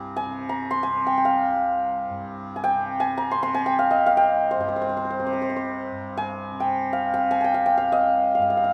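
Bathed in a wet recital-hall reverb with a 1.4-second tail, this brief fragment of introspective, meditative Hindustani classical music unfolds in free time in raga bhairavi on C, tuned to A4 = 443 Hz, as a ringing, hammered santur carries the melody up front between C5 and C6 over a mellow, softly plucked, buzzing tanpura drone sitting low in the mix from C2 to C3, the two sounding together throughout the 8.7 seconds.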